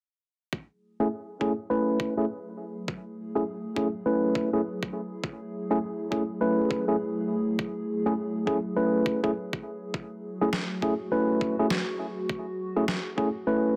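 A thumpy, compressed kick opens this playful, swaggering glitch hop excerpt at 0.5 s, set at 102 BPM with a 16th-note swing in F# minor over F#m9 harmony, and is soon joined by up-front stabs from a bright, clean tine electric piano with delay, low-pass filtering and sidechain pumping, a warbling, nostalgic lo-fi pad holding slow-attack sustained chords through chorus, phaser and vintage 12-bit sampler grit, and a gritty, pitched-down snare that enters at 10.5 s, the mix set in a light reverb.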